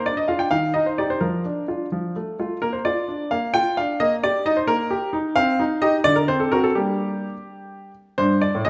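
A clear, natural baby grand piano sits up front as the sole voice in this serious, dramatic excerpt of a classical-period sonatina in 6/8 at 86 BPM, moving with rubato through Bb major before turning to G minor at 5.4 s, its short-sustain tone spanning G2 to G5 and ringing in a moderate recital hall until 8.7 s.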